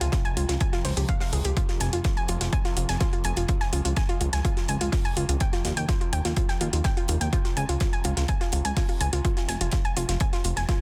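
A dense, heavily limited mix with little reverb carries this dramatic, cinematic slice of melodic techno, built on a punchy electronic kick up front, metallic layered electronic hi-hats and a dry, damped 70s drum kit with a fat snare sitting in the background. A funky, wave-folded analog bass plucks beneath soft, round arpeggios whose dark tone is coloured by chorus, digital delay and sidechain pumping. A detuned, resonant drone with moving overtones sustains behind them over a Dbmaj7#11, Fm, Db, Eb progression.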